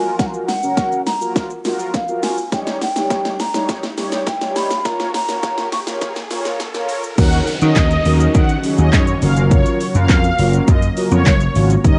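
A straight 4/4 pulse at 103 BPM drives this confident dance-pop excerpt in Eb minor, with a punchy, overdriven electronic drum kit up front, its fat snare, metallic hats, handclaps, shaker and crash running a build-up fill from the start. Over it a hollow, airy clay ocarina carries the melody with vibrato and tape echo until 5.8 seconds, while round, brassy synth brass with chorus and sidechain pumping plays accompaniment across the whole cut under a filter sweep. A very quiet electronic riser and downlifter sits in the background as the harmony moves from Gbmaj7 through Eb7/G to Bbm. The drop lands at 7.2 seconds, when an amped vintage slap bass pumps in up front and a lush detuned supersaw pad takes over the melody, and from 7.5 seconds a glassy, ethereal FM pad adds soft sustained chords over Ebm7 and Gbmaj7. The mix has a lo-fi home cassette character with light digital reverb and a dulled top end, and the passage is cut from a longer piece.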